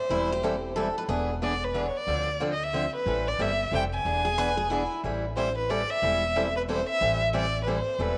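A bowed violin opens at 0.0 s, its soft attack, vibrato and portamento giving an expressive, up-front melody with a slapback echo, in this swinging, virtuosic passage of acoustic string swing in the jazz manouche style. From 0.1 s a picked parlour acoustic guitar, boxy and close, carries the accompaniment alongside a dark, thumpy pizzicato upright bass with a woody gut-string tone. A full-bodied dreadnought guitar adds a brief picked second line, returning again around 4.2 s. The tune moves at 182 BPM in 3/4 with a swung eighth-note feel in A minor, cycling through Am7, E7 and Dm9 across two statements of the same section. A moderate plate reverb lends the ensemble a glowing sense of space, and the passage is cut from a longer piece.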